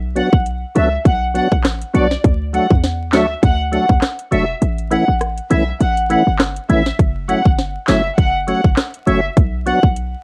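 Vinyl crackle and light reverb frame this hypnotic, bouncy dancehall excerpt, with a swung sixteenth-note feel. Up front, an overdriven, electronic island pop drum kit brings a tight kick, sharp snare, metallic hi-hats, handclaps and rim clicks. A punchy, short 808-style bass with a sine tone, a noise layer and a fast, decaying attack holds the low end, and the kick drops out between 4.6 and 7.0 seconds. A fat, clean tonewheel organ with key click, chorus vibrato and a slow rotary speaker supplies percussive chords, while a pure, floating studio violin section, bowed sul tasto and sent through analog delay, carries the melody.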